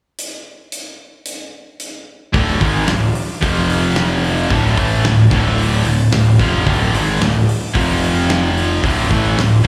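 The drum kit opens alone, its punchy kick and mid-forward, medium-tuned snare sounding up front in a big room with a rolled-off top, driving a hard rock groove at 111 BPM in 4/4. At 2.3 seconds an aggressive wall arrives: a scooped, high-gain guitar up front, a quieter double-tracked distorted guitar and a faint overdriven semi-hollow guitar all riff low between D2 and A3 over a fuzzy, punchy picked bass, moving through D5, F5 and D minor. It sounds like a live club gig heard through the venue's PA, a short cut from a longer piece.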